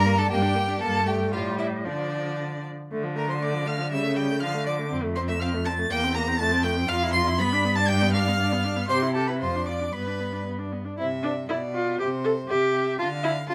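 A lively, cheerful classical-period string quartet movement in 2/4, cut from a longer piece, with a single bowed violin carrying the high melody in a smooth, even, somewhat distant voice while a clear second violin sings the inner line beneath it. The viola fills in the accompaniment with expressive vibrato and portamento, and an up-front, focused cello anchors the bass. A light reverb surrounds the quartet as the harmony turns toward brighter ground around 6.9 seconds.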